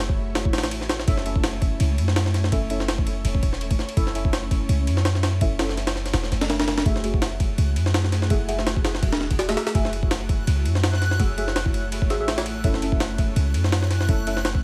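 A gritty, overdriven jungle drum kit sits up front, its thumpy kick, high-tuned snare and ride pitched up and compressed, driving this nostalgic, atmospheric drum and bass cut from a longer piece. Beneath it a deep, boomy 808-style bass and an ethereal, airy pad with ensemble chorus hold the floor, while dark, wave-folded chord stabs with phaser and dub echo enter at 1.1 seconds. A reversed, dreamy granular texture joins in the background at 7.7 seconds, all wrapped in light reverb and vinyl crackle.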